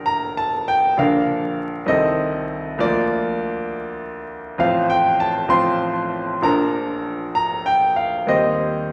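A brilliant, up-front grand piano plays alone through this short fragment of a romantic classical character piece, its warm, hopeful character unfolding in a freely stretched 6/8 across a range from deep bass to high treble, set in a lush recital-hall reverberation with a faint vinyl crackle.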